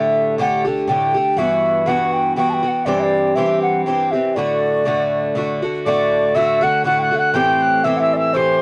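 Vinyl crackle hangs over a dry, close 1970s-style studio sound with light reverb in this rollicking, bright Celtic folk passage in 3/4, where a pure wooden flute with vibrato, a crisp attack and lifted highs carries the melody over a picked, metallic, double-strung Irish bouzouki sitting up front, and at 5.8 s a mellow, distant wooden whistle with chiff and an unsteady tone joins with a second line.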